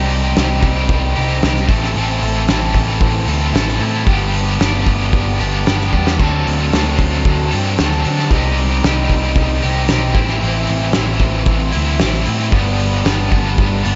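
This short excerpt from a longer piece carries a light reverb and a mellow top end, with nothing above 7.8 kHz. It is a jangly, carefree indie rock groove in G major at 113 BPM in a straight 4/4, tuned slightly low to A4 = 438 Hz. Up front, a bright, double-tracked guitar plays the picked riff through a cranked stack, overdriven and colored by harmonic tremolo and slapback echo. Beneath it, a dark, round picked electric bass sits amped and punchy in the low register, while the loose acoustic drum kit pumps in a studio room with dusky cymbals, a fat snare and a thumping kick, its sound rolled off at the top. The drums come in at 0.1 seconds and play a fill at 5.9 seconds, while the progression moves through Cm, Am, G and D7 before circling back to Cm, Am and G.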